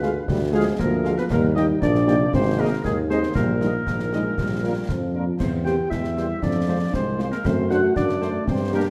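Spirited and festive, this short cut from a longer military-style march for wind band moves at 117 BPM in a straight 2/4, set in Eb major and tuned slightly high to A4 = 442 Hz. A bright trumpet section carries the melody with a soft attack and smooth top, though it sits in the background of the mix, while a warm woodwind section with vibrato and a dark, lightly vibrating solo euphonium share the second line. A mellow, close-miked French horn section fills in the accompaniment, the dark trombone section holds sustained chords with a gentle attack, and a clear solo tuba anchors the bass. Concert snare drum, concert bass drum and clash cymbals with a dark cymbal colour drive the beat with a close, acoustic sound. The harmony opens on a Ddim7 before settling into Eb and travelling through Ab, C7/E and Fm to end the 8.9-second passage on a D7/F#, all heard in a moderate scoring-stage reverb that gives the band a classical concert sheen.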